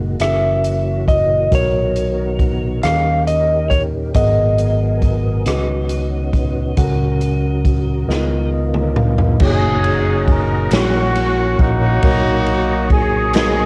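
Slow gospel in 6/8 at 46 BPM in F# major, jubilant and uplifting, where a mellow tine electric piano and a clear tonewheel organ with slow rotary speaker and chorus vibrato in the background carry the chords over a dark, round fingered electric bass and an airy, punchy swinging big-band drum kit, while a clean lap steel guitar sings the melody with slide and volume swells until 8.5 seconds, then after a drum and electric piano fill a smooth-topped horn section with light vibrato takes over at 9.4 seconds, joined by very quiet, crisp group handclaps at 10.7 seconds, all with light reverb and the character of a home cassette recording cut from a longer piece.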